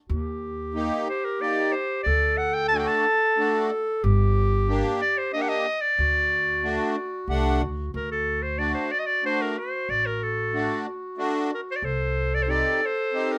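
Festive yet bittersweet, this klezmer passage moves at 92 BPM in a straight 3/4, set in D phrygian dominant and cut from a longer piece. An up-front upright bass plays pizzicato on steel strings, giving a woody, growly low end, while a close-miked accordion with light tremolo tuning adds reedy, sweet and full accompaniment from 0.7 seconds. A warm, close-miked clarinet carries a second line in a narrow range around F#4 to A4, and a bright, present clarinet takes the melody up front from 1.1 seconds, both in a classical style. The harmony moves through Eb, D, Gm and D before touching Cm at 11.8 seconds, and a clarinet solo fills the closing stretch from 7.9 seconds onward. Light reverb gives the recording a modest sense of space.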